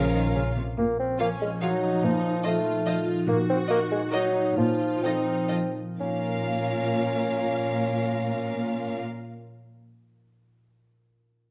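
A recital-hall sound with moderate reverb frames this short, playful and whimsical film cue in Bb minor, moving in 3/4 at 120-145 BPM with a magical, sneaky mood, and it eases its pace between 2.7 and 6.0 seconds. A close, expressive chamber violin section carries the melody over a second violin line in the background, a lush viola section, a smooth cello section, an up-front vintage-toned bassoon and a ringing, fingerpicked concert harp playing arpeggios until 9.9 seconds. Brief touches open the cue and fall away within 0.6 seconds: a very quiet mellow clarinet, a distant oboe, a roomy French horn section holding chords and a double bass section on a low Bb.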